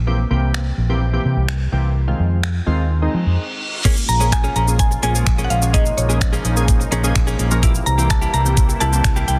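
A woody, mellow mallet-like synth pluck carries the melody from 4.1 seconds in this bittersweet yet confident dance-pop excerpt, arriving after a reverse cymbal and a brief break. A clean, direct-recorded electric guitar riff with subtle chorus enters at 3.8 seconds, and an evolving, detuned supersaw swell follows as the break ends at 3.9 seconds. Both join a dark, foam-muted vintage electric bass, airy glassy digital keys and a layered pop drum kit whose knocking kick, crisp hats, finger snaps, shaker and crash sit up front, with the bass, keys and supersaw pumping to the sidechain in a dense, heavily limited mix with light reverb.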